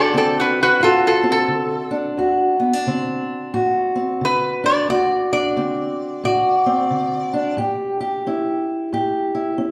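A swung 4/4 groove drives this rollicking, soulful slice of acoustic country blues, with a boxy parlour steel-string guitar fingerpicking the accompaniment beneath a metallic, nasal lap resonator guitar playing the slide melody with fingerpicks, both up front. The resonator drops out at 7.5 seconds, leaving the acoustic guitar alone as the harmony moves from D7 to A7 until 9.7 seconds. The duo plays live in one room, wrapped in a lush large studio reverb.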